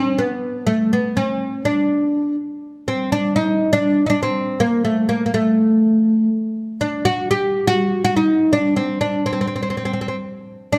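A dark production places the oud up front in a moderate recital-hall reverb, giving it a sense of space around a close, present sound. This is a short cut from a longer piece of Arabic music in D maqam hijaz, moving at 122 BPM in a straight 4/4 with a stately, warm mood. The oud plays solo throughout the 10.8 seconds, its plectrum-plucked double strings sounding woody and deep on the fretless instrument. The melody stays within a compact range from A3 to G4. A brief opening passage gives way at 2.6 seconds to a new section that carries the line through to the end.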